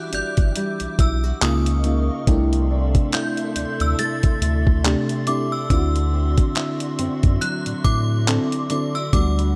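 A swung 70 BPM groove from a gritty, compressed soul sampler-style kit of thumpy kick, hi-hat and handclaps, with a deep, saturated sub bass up front, anchors this late-night, sensual contemporary R&B excerpt, where a lush, dreamy FM electric piano with chorus, thumb-plucked nylon-string guitar arpeggios, a glassy, ethereal FM pad and an inharmonic, ringing synth chime melody with phaser and delay drift over Em9, C#69, C69 and D9 in a digital ambience.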